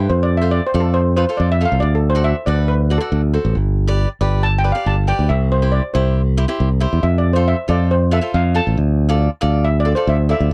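A festive, sunny calypso opens straight away, with steel pan, cavaquinho and electric bass all sounding together at a brisk 138 BPM in a straight 4/4. The steel pan takes the melody and holds the spotlight for the whole 10.5 seconds, its metallic, shimmering tone struck with hard rubber sticks on a double seconds pan. Underneath, the cavaquinho supplies picked accompaniment with a crisp acoustic sound, sitting a little further back in the mix. The modern fingered electric bass is the most forward part, growly and direct, anchoring the harmony as it moves through F, D7, G, C, F and Dm. The close, dry 1970s-style studio sound carries little reverb, and this excerpt, cut from a longer piece, is tuned slightly above standard at A4 = 441 Hz.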